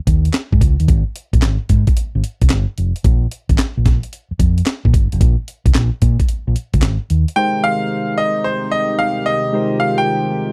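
This flirty, bouncy new jack swing cut opens with a gritty, compressed breakbeat drum kit, its thumpy kick, high-tuned snare, handclaps and hi-hat pushed up front and swung on the 16ths at 111 BPM in 4/4. A dark, round, punchy fingered electric bass rides alongside it in the low register, giving the R&B groove in Ab major a heavy, amped bottom. Both drop away at about 7.2 to 7.4 seconds. At 7.4 seconds the arrangement shifts to an Abmaj7 chord, where a bright, brilliant grand piano takes the melody high in its range, polished and short in sustain, with a slapback echo. Beneath it, soft, gentle electric-piano-like synth keys with chorus fill in the accompaniment, and a shimmering, retro pulse-width pad holds sustained chords with a slow attack. The sound is dry and close, like a 1970s studio with little reverb, and the clip is cut from a longer piece.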